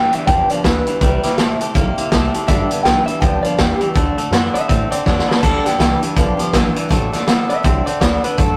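Upbeat and rollicking, this short rockabilly excerpt cut from a longer piece swings at 163 BPM in G major, tuned slightly flat, moving through G, C and D7. An electric guitar through a small old amp carries the melody with a slightly broken-up, lo-fi, compressed tone, while a bright, clean, twangy electric guitar picks out a low riff beneath it. A boxy old ladder-braced acoustic guitar with aged strings plays picked accompaniment in the background alongside a woody, thumpy pizzicato upright bass on gut strings. The vintage drum kit sits up front with a punchy kick, medium-tuned snare, hi-hat and dark splash cymbal, its top rolled off, and a drum fill arrives at 5.1 seconds. Light reverb and a rough rehearsal-room sound give the whole take a loose, live character.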